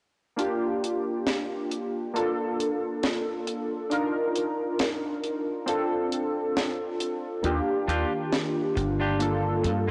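Nostalgic and dreamy, this slow vaporwave piece in Bb major moves at 68 BPM in 4/4 with a light sixteenth-note swing, opening at 0.4 s on warbling, detuned lo-fi synth keys with chorus, delay and 12-bit grit over a dry, tight funk kit of hi-hat and a high-tuned snare. A punchy, foam-muted slap bass with transformer saturation arrives up front at 7.4 s, followed by a mellow, phased tape-like pad in the background at 7.8 s and a clean, picked semi-hollow guitar riff with lush chorus and delay from 7.9 s. Chords drift from Bb6 through Bbmaj7, Ebmaj9 and Gm9, all set in a lush hall reverb with gritty cassette-tape character.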